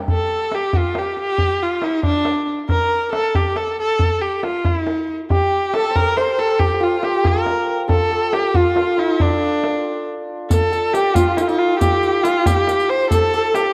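Hypnotic and melancholic, this fragment of a longer Persian modal ensemble piece moves in a straight 6/8 at 92 BPM, with an up-front bowed kamancheh singing the melody in a clear, focused voice full of vibrato and portamento, a hammered santur shimmering and ringing beneath it as a second line that falls silent from 1.9 to 5.3 seconds, a deep, band-limited tombak played with soft hands, and a close, dry riq whose bright jingles join at 10.5 seconds just after a brief break, all bathed in a dreamy plate reverb.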